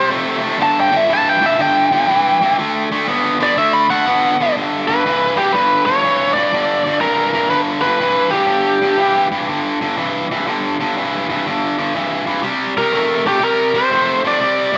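A swung shuffle at 122 BPM in 4/4 drives this swaggering, rollicking blues excerpt in G major. Underneath, a bright, picked electric guitar with crunchy overdrive holds down a low riff from start to finish, sitting up front in the mix. Above it, a biting lead guitar plays the melody in its upper register, its overdriven tone trailed by tape echo. The lead carries a solo through the opening bars, moves into the new section at 4.5 seconds, drops out at 9.3 seconds and comes back at 12.8 seconds to close. A moderate echo chamber reverb gives the pair a roomy, lingering tail as the harmony moves through C, G and D.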